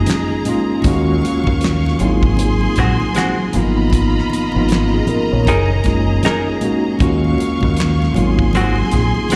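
Sultry and soulful, this short neo-soul and R&B excerpt sways in 4/4 with a lightly swung sixteenth-note feel, captured as a live gig heard through the venue's PA with recital-hall reverb. A mellow tine electric piano sits up front carrying the accompaniment, its clean tone coming through built-in speakers with a touch of slapback echo. Beneath it, a deep, round dub-style fingered bass punches forward, while a damped 70s drum kit supplies a fat snare, tight kick, hi-hat and handclaps with a rolled-off top, and very quiet, thick-skinned congas add close, dry percussion. A bright, intense and lush studio string section holds sustained bowed chords with vibrato in the background. At 2.8 seconds a dark, compressed hollow-body jazz guitar enters with a picked second line, also touched by slapback echo, over extended chords that move from a rootless Gb69 through Ebm9, Ab7 and Abm69 before returning to Gb69, Ebm9 and Ab7.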